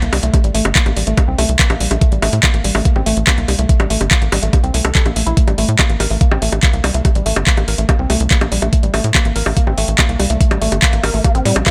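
An overdriven electronic kick drum knocks from 0.3 seconds, driving this psychedelic trance excerpt at 143 BPM in A phrygian, with a tight, punchy sequencer bass built from sawtooth and square waves beneath it. A woody, wave-folded pluck carries the riff with a short decay, colored by chorus, cassette tape, sidechain pumping and digital delay. An up-front drum kit of bongos, handclaps, metallic hi-hat and snare, re-recorded in a small room, fills out the driving groove inside a digital ambience.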